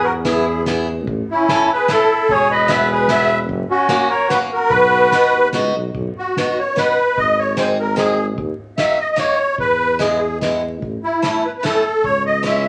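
A jolly, festive alpine dance band excerpt in B major at 148 BPM in a rubato 3/4, led by a reedy, shimmering musette accordion melody up front, with a clear, distant trumpet second line that stops at 5.5 seconds, a mellow tuba bass with light vibrato, a bright, boxy picked swing-style acoustic guitar with finger squeak, and a dark soft-mallet drum kit with boomy kick, all in a studio reverb with vinyl crackle.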